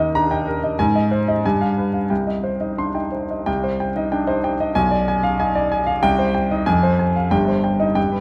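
A clear grand piano plays alone throughout this short 8.2-second excerpt from a longer classical piece, a virtuoso piano study in C minor with an agitated, stormy mood. The tempo sits around 93 BPM in 2/4, though the rubato feel lets the pulse stretch and pull. The piano covers a broad span from G1 up to C6, and its sound is intimate, natural and up front, with audible action noise from the instrument's mechanism. The harmony moves from Eb and Ab through a tense G7b9 to C minor, then returns to the opening material at 3.5 seconds, passing through Bdim7 and F minor before settling on C minor over G. A wet recital hall reverb surrounds the playing, and a layer of vinyl crackle adds a surface texture to the recording.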